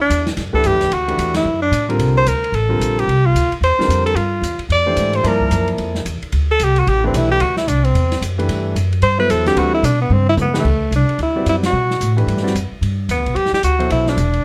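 Open and spiritual in mood, this modal jazz excerpt swings briskly at 222 BPM in 4/4, set in C mixolydian before moving to G major at 10.6 s, with the band tuned to A4 = 437 Hz. A breathy tenor saxophone sits up front and solos until 10.6 s, its punchy, scooped notes carrying vibrato and a smooth top. Beneath it, a woody upright bass, plucked on steel strings, is also up front. A concert grand piano with deep bass and a natural tone accompanies over chords that move from Gmaj9 to C13sus4 and D13sus4 before returning to Gmaj9. An acoustic drum kit sits lower in the mix and sounds airy and polished in a small room, with dark cymbals, a medium-tuned snare and a boomy kick; a drum fill leads into the new section, and the band hits an accent at 11.6 s. Light reverb and a dark, warm production round out the sound.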